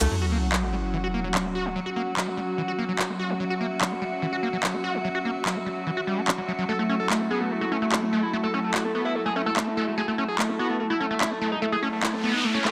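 A 146 BPM pulse in straight 4/4 comes from an overdriven, up-front techno kit of bongos, handclaps and smooth hi-hats, while a squelchy, resonant acid riff screams through distortion, chorus and tape echo beneath an evolving, detuned wavetable pad holding sustained chords and a soft, breathy pad adding airy texture, all under a moderate plate reverb. This intense, psychedelic trance passage, cut from a longer piece over F#5 moving to A5, opens with an electronic sub-drop impact and closes with a noise sweep from 11.9 seconds. After a brief flash at the very start, a gritty, guitar-like synth lead returns at 6.7 seconds, bright and screaming with vibrato, distortion, phaser and tape echo, in a dense, heavily limited modern master.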